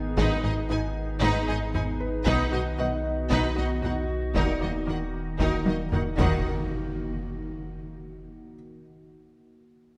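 Bathed in a moderate scoring-stage reverb, this tense, brooding excerpt of hybrid orchestral and electronic film score moves at 115 BPM in Eb harmonic minor, as a glassy FM pad and a deep sine sub bass sound alongside a soft, felt-muted upright piano with delay, vibrato violins carry the melody over a very quiet second violin line, and smooth violas, mellow French horns, a tight detuned sawtooth synth arpeggio, rich double basses and expressive portamento cellos fill out the texture, while hard-stick taiko drums play a fill from 5.7 s before an electronic impact lands at 6.2 s and the chords fall away.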